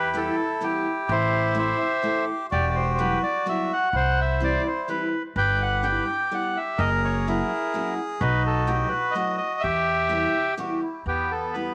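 Whirling and bittersweet, this musette waltz excerpt in E minor moves at 127 BPM in 3/4, with a reedy, vintage bandoneon carrying the melody up front through tape echo, a breathy, nasal melodica adding a mellow second line, a woody, growly pizzicato upright bass with tube saturation anchoring the low end, and a picked steel-string acoustic guitar filling in the accompaniment, inside a small room with light reverb.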